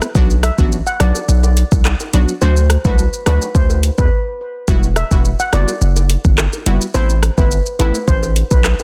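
The mix is dense and heavily limited, set in a digital ambience, on this short, sultry, bouncy dancehall cut from a longer piece. An electronic afro-pop drum kit sits up front with a deep kick, metallic hats, handclaps, rim clicks and shaker, and soft clipping on the snare. Beneath it, a hard-hitting 808-style bass enters at 0.2 seconds with a heavy, sine-based tone, a noise layer and a fast, decaying attack. Bright, detuned sawtooth brass stabs with a filter pluck, treated with chorus and phaser, carry the accompaniment over chords moving from Bm through D to Emadd9 and Amadd9. A mellow, shimmering steel pan lead, played with soft rubber sticks and trailed by delay, arrives at 0.4 seconds. Tight, high-tuned vintage bongos come in at 1.0 second, lingering in the background, and a brief break interrupts the groove around 4.1 seconds.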